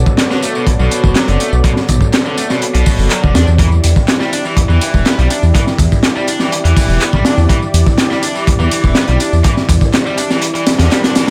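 A studio reverb surrounds this raw, energetic breakbeat passage, cut from a longer piece, with the gritty, saturated drum kit and the rumbling bass sitting up front. At 123 BPM in a straight 4/4, the acoustic kit drives the groove with a tight kick, a high-tuned snare and hi-hat, its top end rolled off for a crunchy, smooth character. A punchy analog drum machine sits lower in the mix, adding handclaps, ride cymbal and tambourine. Underneath, a deep, detuned sawtooth bass with a beating, sustained tone holds the low end until 10.9 seconds, while a moody analog pad with a slow attack and long release holds chords colored by chorus and sidechain pumping. A bright, picked electric guitar plays a distorted, overdriven riff trailed by dub echo, and the harmony moves from Bm7 to Em7 at 3.4 seconds. Near the close, the kick drops out at 10.4 seconds, thinning the beat for the final stretch.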